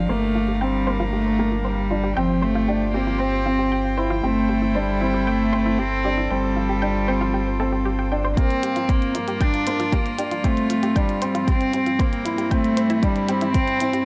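A bowed solo cello carries the melody up front, its tone pure and floating with a soft sul tasto attack, in this hypnotic, cinematic stretch of piano and strings electronica cut from a longer piece. Beneath it a string quartet, one player per line, sustains close chamber chords with an airy bow, light vibrato and a nasal, reedy gut-string colour, fading in across the opening section. A woody, slightly detuned upright piano repeats a worn riff. An analog pluck sits in the background with sawtooth arpeggios, chorus, digital delay and sidechain pumping, and a filter sweep runs through it for the first 8.4 seconds. A round sine sub bass with tube saturation and pumping holds a deep G1 until 8.3 seconds, after which a layered electronic kick and a minimal kit of clicky, tape-toned hats and toms enter as the music builds over chords cycling from Gm7 through Csus4/G, Am7/G and Fadd9/G, all set in a moderate recital hall reverb.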